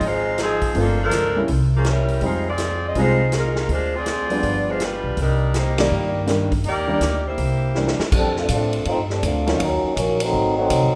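Muted trombones, cup-muted and veiled with a light vibrato, take over the lead at 8.1 seconds for a short section solo over the closing bars of this sultry, dramatic big band swing fragment in C minor at 163 BPM. Before them, the saxophone section carries the melody from the start, its sound warm and roomy with a gentle vibrato, while a concert grand piano with deep bass joins the accompaniment at 0.7 seconds. An upright bass, woody and growly with a thumpy pizzicato attack, anchors the low end, and a swinging drum kit with a punchy kick and medium-tuned snare sounds natural in a big room. The harmony moves through rich jazz chords such as Gm11, C7b9 and Cm9, with a band accent at 5.7 seconds and a drum fill leading into the trombone passage. Light reverb gives the ensemble a sense of space throughout.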